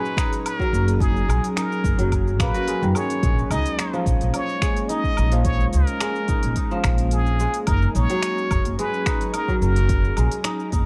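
A plunger-muted trumpet plays a brilliant, wah-wah jazz solo, roughened by 12-bit sampler grit and tape echo, over fingerpicked, ringing kora arpeggios with their own echo, an ethereal, detuned pad with chorus and sidechain pumping, a woody pizzicato upright bass that also pumps and sits up front, a deep electronic kick, and smooth hats with finger snaps, shaker and woodblock, all giving this dark, mystical organic downtempo excerpt a warm, reverberant glow.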